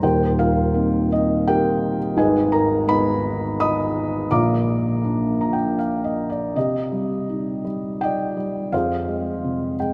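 Rubato phrasing in triple metre gives this brief, brooding classical fragment, cut from a longer piece, a lyrical and bittersweet drift. A lone felt-muted upright piano carries everything from 0.0 s, its thick felt making the tone soft, mellow and dark, with audible action noise keeping it intimate and up front across a span from Eb1 to Eb6. A short fill at 5.0 s leads into the point at 6.6 s where the harmony settles into C minor, and another arrives at 9.4 s, all bathed in a long, wet cathedral reverb.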